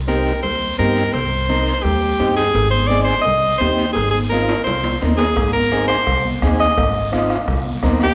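A straight, driving cumbia groove in 4/4 is carried by soft-handed, high-tuned congas sitting in the background, a raspy, band-limited guiro, very quiet ringing cowbell and timbales, and a thumpy, woody pizzicato upright bass with gut strings, all moving from C minor to A-flat in this danceable excerpt cut from a longer piece. Up front, a close-miked, forceful alto saxophone carries an edgy, punchy pop-style solo melody with vibrato, while a mellow, overdriven vintage combo organ adds light-vibrato accompaniment beneath it. After a drum fill from 4.5 to 5.4 seconds, a distant, soft-beatered bombo joins at 5.4 seconds, and the whole recording sits in the wet reverb of a recital hall.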